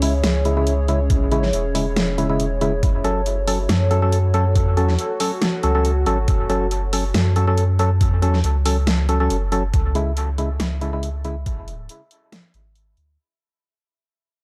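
A soft, round dub sub bass sits up front through this meditative, heavy deep dubstep excerpt in C# minor at 139 BPM, a half-time 4/4 with a light swing, moving from C#m to F#m and back. Hollow, organ-like stabs with chorus and dub echo and a moody, detuned analog pad treated with chorus and phaser float over an overdriven kit of huge snare and bright hats, joined at 1.1 s by a muffled, thumpy, pitched-down kick. The drop runs until 9.7 s, where the pad stops and the piece begins fading out, all carried by a dry, gritty cassette-tape character.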